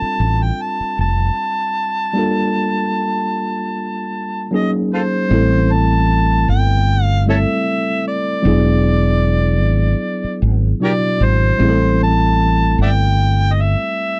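Silky and cinematic, this short excerpt of lush 1970s-style soul moves at an unhurried 76 BPM in 4/4 with a gentle swing on the sixteenths. An overdriven harmonica carries the melody up front, its gritty, amplified tone colored by light vibrato, tongue slaps and scooped notes in a pop-style solo voice. Beneath it, a worn tine electric piano, slightly out of tune and lightly overdriven through its built-in speakers, supplies the accompaniment. A mellow fretless electric bass, dark, round and direct with an ensemble chorus, sits prominently up front in the low register and drops out at 13.7 seconds, just before the others finish. The harmony drifts through lush extended chords like F69 and Gm9 before settling into a minor passage around Am7 and E7 from 5.3 seconds, all captured in a dry, close studio sound with little reverb.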